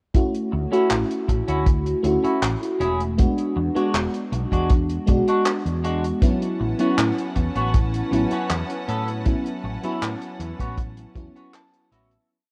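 Woozy and dreamy, this short vaporwave piece drifts at 79 BPM in A major, moving through Dmaj9, E9 and A69 chords over a slowed groove. An FM electric piano layered with a soft pad sits up front with held, rootless chords and syncopated pushes, its lush tone colored by phaser, analog chorus, cassette tape and tape echo. Underneath, a dry, dark slow machine kick and a rolled-off soul kit with closed hi-hat and handclaps carry a slowed pop beat, while a round, amped fretless bass with tube saturation plays a funky syncopated line. A clean picked electric guitar adds off-beat chords in close voicing, softened by lush chorus, 12-bit sampler grit, a low-pass filter and tape echo, and closes with a fill from 11.2 seconds. A clear, biting studio string section enters at 6.2 seconds with bowed sustained chords and light vibrato, just before the fade-out that begins at 8.2 seconds, all within a rough home-demo mix with cassette character and light reverb.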